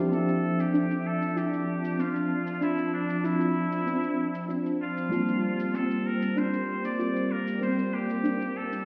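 Heard muffled as if through a wall, with a lush hall reverb and a stone-room echo, this short cut from a longer sunset chillout piece drifts at 96 BPM in D minor with a relaxed, wistful mood, moving from Dm9 to Gm11 at 5.1 seconds. A clean tine electric piano with medium tremolo through a combo amp and a silky, warbling vintage string machine with ensemble chorus and a filter sweep hold the chords, while a distant, nasal trumpet with a straight mute carries the melody with vibrato and delay. In the background, a soft, round pluck plays dark arpeggios with chorus and tape echo, and a layered electronic shaker sits low beneath the other parts.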